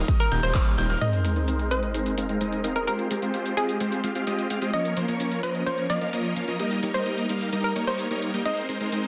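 Euphoric and anthemic, this festival progressive house excerpt opens on a drop where a huge, detuned supersaw lead with sidechain pumping and dub echo carries the riff over a thick saw bass, a punchy overdriven kick and a bright grand piano's arpeggios in the background, while a hollow, bouncy square pluck enters at 0.2 s to carry the melody; then at 1.0 s a sub drop impact lands as a filter sweeps the lead, and the pluck continues above overdriven clap, metallic hats and ride through a dense, heavily limited master.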